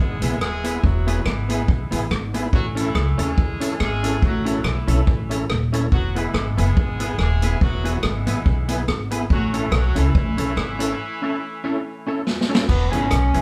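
Recorded live in one room with a wet studio reverb, this cheerful, upbeat ska excerpt sets a tight, clear horn section on the melody over background tonewheel organ stabs with key click and fast rotary speaker, a woody, thumpy upright bass up front, a twangy, slightly broken-up electric guitar and a punchy vintage drum kit, as a break from 11.0 seconds and a drum fill at 12.3 seconds lead into a brilliant, forceful solo trombone at 12.7 seconds.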